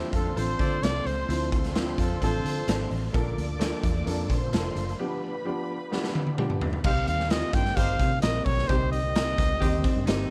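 Warm and uplifting, this uptempo 1960s-style soul excerpt at 130 BPM sets a mellow, up-front trumpet with plate reverb over a soft-attack jazz horn section, intimate sul tasto studio strings that play until 6.8 s, a woody upright piano, a very quiet overdriven tonewheel organ with slow rotary speaker, a round, foam-muted electric bass and a gritty, boomy garage drum kit whose fill leads into a new section over Cm at 6.8 s, before a twangy, slightly broken-up electric guitar riff enters at 9.8 s, all within a dark, warm production.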